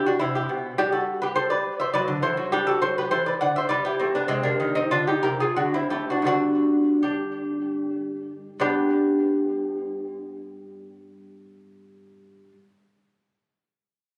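A solo lute opens the fragment, fingerpicked on gut strings in a baroque-style dance in G major and 3/4 time, with a flowing, radiant mood. The playing is delicate and rubato, moving between roughly 75 and 105 BPM, and the line spans from G2 up to F#5. Its double courses, some tuned in octaves, give the mellow tone a certain fullness, and a touch of tape echo trails behind the notes. The phrase slows from 3.4 to 8.6 seconds, where a new section begins on G, and the lute rings until 12.5 seconds. Placed up front in a room with light reverb and a hint of club ambience, the phone-captured, compressed sound feels intimate and close.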